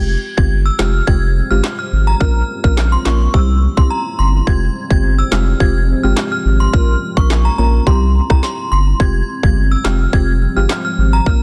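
A straight 4/4 dancehall groove from an electronic island pop drum kit, with tight kick, woody snare, rim click and handclaps entering at 0.4 seconds, drives this bouncy, sultry passage, where a thick, saturated sub bass sits up front beneath deep, detuned, warbling chord stabs with sidechain pumping, a moody sawtooth pad swelling in slowly at 0.7 seconds through chorus and reverb, and an inharmonic FM chime ringing high on top through ensemble chorus and tape echo, the whole held in a dense, heavily limited modern master.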